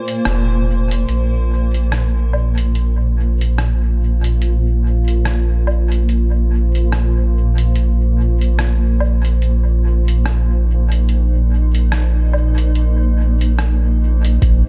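A deep, round sub bass sits up front in this hazy, spacious ambient dub excerpt at 72 BPM with a light sixteenth-note swing, beneath a cloudy, granular pad holding a Bbsus2 chord and drenched in its own reverb that receives a filter sweep from 1.1 seconds, while a muffled, pitched-down sampler kit of hi-hat, rim click and woodblock plays through studio reverb and dub echo, and a faint, thumpy electronic kick surfaces only at 14.4 seconds.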